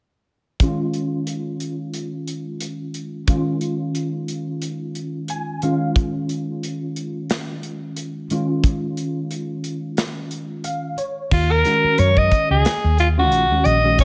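Set in a small room with light reverb, this funky, intense electric jazz fusion excerpt moves at 90 BPM in 4/4 with a 16th-note swing, in Eb minor. A worn, slightly out-of-tune tine electric piano with ensemble chorus holds down the accompaniment over a polished, airy studio drum kit of crash, hi-hat, tight kick and medium-tuned snare, with the piano adding fills at 5.0 and 10.3 seconds over an Eb9sus4 chord. At 11.3 seconds the harmony shifts to Ebm11 as a raspy, growling soprano saxophone with vibrato, scooped notes and slapback echo takes the melody up front, joined by a dark, round fretless bass with chorus.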